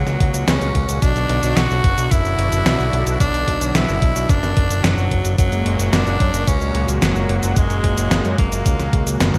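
A raspy tenor saxophone, a brassy analog pad and a fat analog bass open this short synthwave cut together, setting a nostalgic, driving mood at 110 BPM in a straight 4/4 feel in B dorian. The close-miked saxophone carries the melody in a pop style, its gritty tone colored by vibrato and scooped notes. Behind it, the pad sits in the background with a vintage, warbling character, chorus and sidechain pumping, and a soft-attack filter swell. Up front, the bass is thick and nasal, built from detuned sawtooth and square waves with a saturated edge and a fast attack. The gated 80s drum machine enters at 0.1 seconds with hi-hat, shaker, snare and toms, its snare drenched in gated reverb and overdrive, and an overdriven, thumpy electronic kick follows at 0.2 seconds. Over harmony moving from F#add9 to Bm and back, the passage closes with a drum fill at 9.2 seconds, all framed by bright 1980s-style digital production with light reverb and digital ambience.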